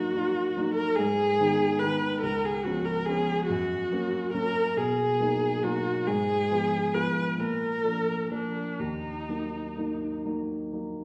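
A single bowed viola carries the melody up front with vibrato, portamento and a soft attack, singing an expressive, elegiac line in Eb minor that falls silent at 10.2 seconds. A baby grand piano, natural in tone and also close, accompanies in a slow, rubato 6/8 at around 41-48 BPM, moving through Abm, Db7, Gb and Bmaj7 before settling back on Ebm. Tuned to A4 = 435 Hz, this melancholic romantic fragment is cut from a longer piece, and the wet recital hall reverb places the listener further back in the room while the piano rings on alone to 11.0 seconds.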